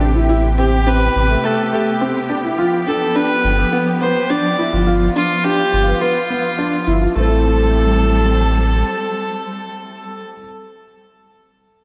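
Soaked in a lush hall reverb, this dreamy, melancholic piano and strings electronica excerpt moves at a hypnotic 105 BPM in A minor, with a muted, veiled string section holding bowed chords beneath an intimate grand piano riff, coloured by analog chorus and delay, whose action noise is audible. A deep, round sub bass with tube saturation sits up front until 8.8 seconds, while a single nasal, earthy viola enters at 0.6 seconds to carry the melody with light vibrato and delay. The harmony moves from Am7 to G7 and returns to Am7 at 7.2 seconds.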